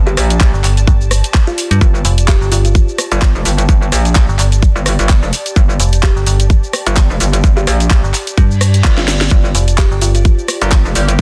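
A metallic wobble bass and an ethereal, airy pad open this gritty, swaggering bass house excerpt together, set at 128 BPM in G minor with a 16th-note swing and tuned slightly below standard pitch. The wobble bass is bright, aggressive and saturated, carrying chorus and overdrive, while a second metallic FM bass with a digital edge and tube saturation sits up front beside it; both basses and the pad carry sidechain pumping. A tight, overdriven electronic kick drives the groove, joined by a layered garage kit of cracking snare, handclaps, hi-hat, rim click and shaker. In the background, the pad drifts with slow attack, ensemble chorus, reverb and phaser, and a soft, woody kalimba plucks short delayed phrases in two passages. A reverse cymbal rises at 8.5 seconds into a brief drum fill, and a nasal, band-passed chord stab with detuned sawtooth tone, phaser, chorus and delay appears at 10.6 seconds. 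The dense, heavily limited master sits in a digital ambience over a steady G minor chord.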